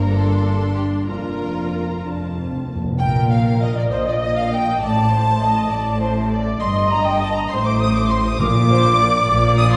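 Graceful and spirited, this quick classical-period movement for symphony orchestra moves in 6/8 with a flexible, rubato feel, taken from a longer piece. A rich violin section carries the melody from the background while a clear, close second violin section adds a line above the smooth viola accompaniment, and lush cellos and double basses ground the bass, the basses adding expressive portamento. A dark, distant French horn section holds sustained chords through the opening 3.0 seconds, with timpani, played with medium mallets on calf heads, entering with a fill just before the music turns. From 3.0 seconds a hollow, airy flute steps forward with a crisp second line over the strings, and the timpani return briefly near the close. The sound sits back in a reverberant concert hall, giving the orchestra a soft, distant sheen.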